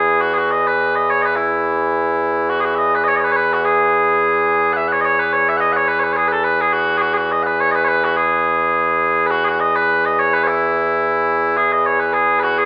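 A sweet, mellow tone rings through a recital hall with moderate reverb, giving this short cut from a longer Celtic folk piece an open, church-like resonance. A solo set of small bagpipes sits up front and plays continuously, spanning a low register up to a high one, with a gentle swing to its lively, bright 4/4 tune. The phrase repeats before shifting to a new section at 11.6 seconds, just before the recording ends.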